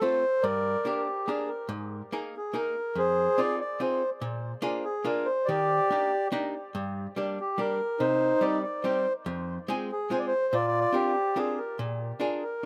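A mellow, reedy accordion carries the melody from the first moment with a touch of tape echo, set up front alongside a dark, clean, picked hollow-body archtop guitar in accompaniment, in a nostalgic, whirling musette waltz at 142 BPM in 3/4 that moves through Gm, Fm7, Bb7 and Ebmaj7, captured with close, detailed microphones and light reverb in this short excerpt from a longer piece.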